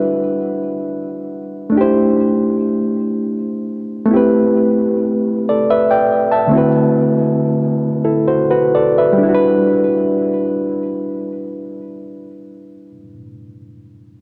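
A reedy, clean electric piano plays alone and up front for the whole 14.2 seconds, sounding as if heard through its own built-in speakers, with a delay trailing behind its notes. This sultry, late-night R&B piece in E minor moves in a slow 6/8 at around 41 to 51 dotted-quarter beats per minute, with a straight feel. The harmony drifts through lush extended chords, Em9, C6, Am9 and D13, before returning to Em9 at 9.2 seconds, where a new section begins. The tempo slows from 4.1 to 9.2 seconds, easing into that return. A long cathedral reverb soaks the mix, giving it a dreamy, floating haze, and the recording is cut from a longer piece.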